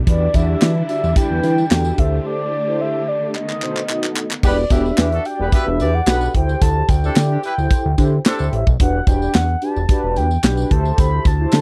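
This slick, funky slice of early-eighties boogie funk opens with a lush, bowed string section holding sustained chords over a fat, detuned analog bass with a fast attack, while an up-front drum kit with a tight kick, medium-tuned snare, hi-hat and handclaps drives the straight groove. A mellow, horn-like synth lead carries the melody high above, its soft attack and vibrato treated with chorus and slapback echo, as round, brassy synth chords fill in the accompaniment beneath. A jingly tambourine sits far in the background. After a break and a drum fill, the strings drop away at 4.4 seconds and a distant, roomy horn section enters with a second line, playing until 8.5 seconds. The recording is dry and close, with little reverb, and the harmony circles through minor-ninth and suspended seventh chords in this fragment of a longer piece.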